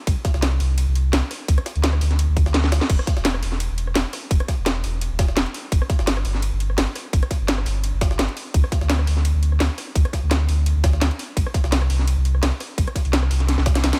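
A deep, full sub bass with an added octave sits up front in this clip cut from a longer liquid drum and bass track, its sine and triangle tones striking with a fast attack and then sustaining low beneath the beat. The mood is dreamy and lush, with a gentle swing on the sixteenth notes. A tight electronic kick and a layered drum kit, with a cracking snare, metallic hats, rim clicks and crash cymbal, are also placed up front and carry a small-room character. Behind them, a gritty, compressed jungle-style sampled kit adds a high-tuned, pitched-up snare and ride cymbal, thinned by filtering on the snare and cymbals. The passage plays as a drop throughout, with a drum fill at 2.6 seconds leading into a second drop and another fill closing it out from 13.5 seconds, all in a dry, close sound with little reverb.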